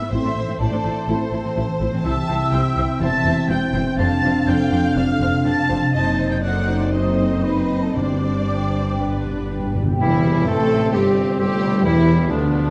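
A symphony orchestra opens with lush, vibrato-rich violin sections, one carrying the melody and the other a second line, over mellow flutes, ringing fingerpicked harp arpeggios, background violas and cellos, distant double basses and dark French horn chords in a cheerful, spirited, rubato C major romantic movement at 111-132 BPM, with hard-mallet timpani sounding at 2.0 s and a fill just before 10.0 s, where a clear clarinet, mellow cor anglais, very quiet trombones and a background tuba join under the recital hall's wet reverb.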